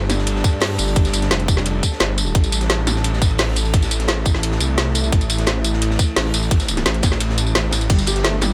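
Dark technical drum and bass at 173 BPM in a straight 4/4, this short cut from a longer piece feels tense and mechanical, moving between G5 and A5 chords. A deep, moody ambient pad holds sustained chords throughout, its detuned sawtooth layers with a sub octave and moving notch blooming slowly through chorus and built-in reverb while sidechain pumping makes it breathe, and a thick, detuned saw bass sits up front with a fast attack, chorus and overdrive, pumping in the same way. The rhythm section stacks a tight electronic kick, entering at 0.4 seconds, with an up-front drum and bass kit of woody snare, metallic hats, crash and tambourine, both re-recorded in a small room. Behind them, a crunchy breakbeat kit with a high-tuned snare, hi-hat and ride sounds saturated and gritty yet smooth, its filtered top rolled off and tucked into the background. At 7.9 seconds a felt-muted upright piano enters with soft, intimate arpeggios, dark and mellow, carried on dub echo and sidechain pumping, all within a small room ambience.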